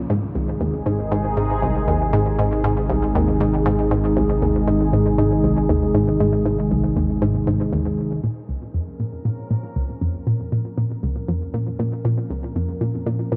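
A squelchy, resonant blip pluck with chorus and analog delay drives a low, up-front riff through this mysterious, hypnotic cut from a longer piece of ambient, sequencer-driven space music at 118 BPM in Bb minor, riding over an evolving, detuned pad of sustained chords with chorus that fades in from 8.2 seconds as the harmony moves from Ab to Bbmadd9, while a round, deep analog bass holds Ab1 until 8.2 seconds, the whole mix set inside a huge ambient reverb.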